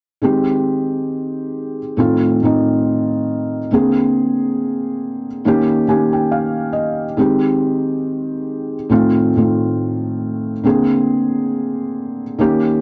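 A small room's moderate reverb surrounds a felt-muted upright piano placed up front, its thick felt and low-pass filter giving a dark, mellow tone with audible action noise that makes the sound feel intimate. Cut from a longer hip hop piece, it moves at 69 BPM in 4/4 with a 60% swing on the sixteenths, in Ab major, and the mood is cosy and dreamy. The piano carries the accompaniment from 0.2 to 12.8 seconds, spanning A2 to Ab5 as it cycles through Abmaj7, F7/A, Bb9 and Eb7 before returning to Abmaj7. A brief piano fill arrives at 5.4 seconds over the Eb7 chord, adding a small flourish before the progression comes back around.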